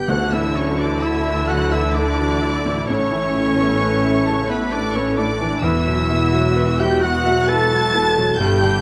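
A distant, roomy orchestral sound in a recital hall with moderate reverb opens this uplifting, tender cinematic excerpt, cut from a longer piece, in D major at a rubato 65 BPM in 3/4. A lush, bowed violin section carries the melody high in its range with smooth vibrato, while a second violin line, a solo oboe with light vibrato and a warm clarinet in the background add supporting lines. A bright, brilliant concert grand piano with deep bass sits in the background as accompaniment alongside an expressive viola section. A ringing, thumb-plucked concert harp spins arpeggios, and a dark, very quiet French horn section holds sustained chords. Underneath, a focused double bass section with a smooth top and an even cello section form the bass, while round, soft-mallet timpani sound very quietly on D3 only from 0.1 to 1.4 seconds. The harmony moves from Dadd9 to Aadd9 and on to Esus2.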